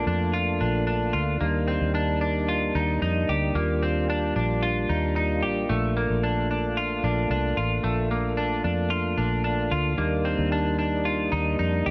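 A straight 4/4 pulse at 112 BPM carries this dreamy, floating dream pop passage in Bb major, cut from a longer piece, as it drifts between Bbmaj7 and Ebmaj7 across its 11.9 seconds. A foam-muted fingered electric bass sits dark, round and punchy up front, while a bright, clean semi-hollow guitar plays compressed, picked arpeggios through analog chorus and delay. A mellow tonewheel organ holds sustained chords, colored by chorus vibrato and a slow rotary speaker, all within a light reverb.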